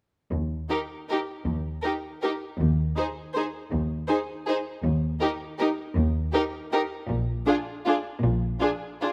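Classical string writing in a lilting triple metre, festive and elegant in mood, with uneven, rubato beats that give the phrasing a supple, breathing quality. Cellos and double basses open the passage at 0.3 seconds, laying a rich, even foundation in their low registers, and the upper strings join at 0.7 seconds. A violin section carries the melody with a focused, vibrato-laden tone, while a second violin section sings a soft-attacked, expressive line just beneath it and the violas fill in a smooth, lush accompaniment. All sections are bowed and play as full ensembles, and the harmony arrives on Bb at 7.1 seconds before the strings end at 9.1 seconds. The sound is close and detailed, with light reverb, while the second violins, violas, cellos and double basses sit up front, and the passage is cut from a longer piece.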